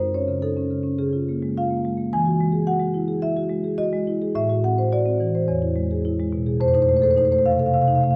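Rubato phrasing loosely around 107 BPM in 4/4 carries this flowing, playful 8.2-second cut from a longer contemporary classical piece for solo marimba, where medium mallets sound full and up front across a span from E2 to G#5, close-miked yet set in a recital hall's 1.5-second reverb, as the harmony drifts through Gbm6, Db6, Emaj9, Am6 and E6 before settling on F7.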